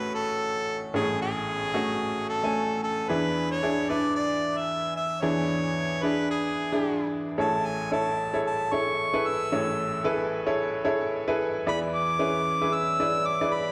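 A dark, warm production sits in a moderate recital-hall reverb, framing a hopeful pop piece at 112 BPM in 4/4 with a light sixteenth-note swing in A major. Up front, a clear solo harmonica carries the melody while a bright, woody upright piano accompanies intimately, its action noise audible, both playing throughout. The harmony moves between Amaj7 and E7, and a second section begins at 7.4 seconds before this short excerpt ends at 13.7 seconds.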